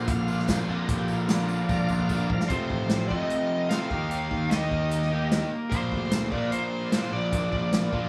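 A bright, shouting tonewheel organ through a slow rotary speaker sits very quietly beneath two warm, overdriven guitar riffs, one crunchy and one biting in the background, while a fuzz-drenched bass and an up-front vintage kit with a punchy kick drive this swaggering, brooding classic rock excerpt at 149 BPM, a jingly tambourine adding sparkle until 2.2 seconds and a drum fill leading at 2.5 seconds into a dark, smooth overdriven lead guitar melody over chords moving from Fadd9 to Eb and Bb in a large, live-sounding studio room.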